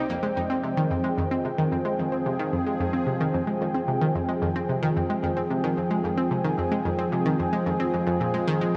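Drenched in a vast, echoing cathedral reverb, this expansive, cosmic stretch of sequencer-driven space music pairs an evolving, resonant sawtooth pad holding a sustained Fmadd9 chord with a round, detuned analog pluck riff treated with chorus and delay, while a bubbling stepped-filter texture sits barely audible underneath.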